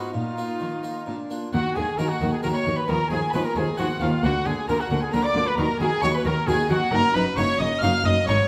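A stormy, dramatic baroque-style concerto movement in Eb minor at 134 BPM in 3/4, cut from a longer piece, where a bright, up-front trumpet carries the melody over a dark, reedy gut-string violin section an octave higher, while a second violin line and nasal violas sit in the background, a dry, close-miked Flemish-style harpsichord adds accompaniment, rich cellos anchor the bass, and double basses join at 1.5 seconds as the harmony moves from Bbsus4 through Ebm and Abm13/Eb, all in a recital-hall reverb.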